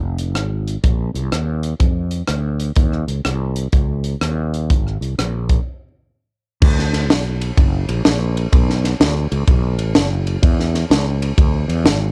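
Uptempo gospel with a hopeful, reverent swing, cut from a longer piece: a growly, up-front fretless electric bass carries the low end beside a crisp, acoustic fusion drum kit of punchy kick, high-tuned snare, rim clicks, hi-hat, ride and crash, its small, pumping room colored by cassette tape, with a brief break from 5.7 seconds before a new section begins at 6.6 seconds, all under light reverb with the homespun grain of a cassette home recording.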